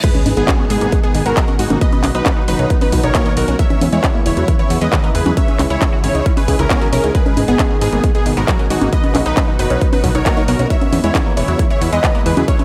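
In straight 4/4, a punchy, up-front electronic kick drives this emotional, soaring uplifting trance drop cut from a longer piece: a very quiet reverse cymbal and impact fill the first 1.8 seconds, a fat analog bass with a filter sweep enters at 0.3 seconds, and a layered dance kit adds congas, crash, handclaps and hi-hat, while a huge, compressed supersaw lead with vibrato and delay rides over a lush pluck second line, a bright phased pluck arpeggio trailing diffuse ambient delay and a warbling vintage chorused pad in the background, with the bass, lead, plucks and pad all pumping from sidechain under light reverb.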